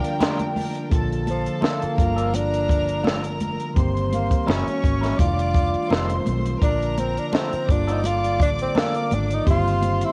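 A home cassette recording with light small-room reverb carries this smooth, lush 1970s-style soul excerpt at 84 BPM, where a breathy, intimate tenor saxophone solos up front over clear, earthy bowed violins, a clean tine electric piano, a compact cocktail kit with a punchy kick and high-tuned snare, a foam-muted round electric bass entering at 0.9 seconds, twangy slightly broken-up guitar and bright high-tuned congas in the background, all moving through chords from Bb6 and Gm9 to F13 and Bbmaj7.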